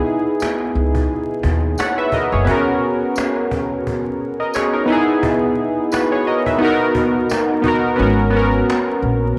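This lo-fi hip hop excerpt has a hazy, nostalgic mood and a gentle sixteenth-note swing, with vinyl crackle running underneath. Up-front analog keys carry the accompaniment throughout, their round, airy, detuned sawtooth tone warbling through chorus and plate reverb, with a noise layer and a filter sweep adding vintage character. A woody, distant cajon played with soft hands sits in a large room with faint snares, while a jingly, bright tambourine stays close and dry in the background. A growly, thumpy pizzicato upright bass with steel strings enters at 0.8 s, drops out at 2.5 s and returns up front at 8.0 s, where the kick falls silent for the closing section. The harmony drifts from C#m7 through Bmaj13, Emaj9#11/B and Bmaj7 before settling on G#m11, all within a moderate studio ambience.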